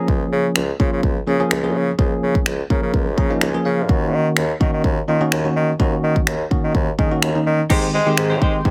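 A straight 4/4 dance-pop pulse at 126 BPM drives this euphoric, upbeat clip from a longer piece, with a punchy, layered electronic kit of kick, finger snaps and crash sitting up front beside a bright, bell-like tine electric piano and a clear bassoon carrying the bass line with light vibrato, both piano and bassoon pumping against the kick. The electric piano plays a fill from 2.9 to 3.9 seconds as the chords move from Bbm7/Db to Ebm7, and at 7.7 seconds the harmony lands on Abmaj7 as a picked, direct-recorded clean guitar riff with lush chorus and a very quiet, shimmering retro pulse-width pad enter. The mix is dry and heavily compressed, with a radio sound.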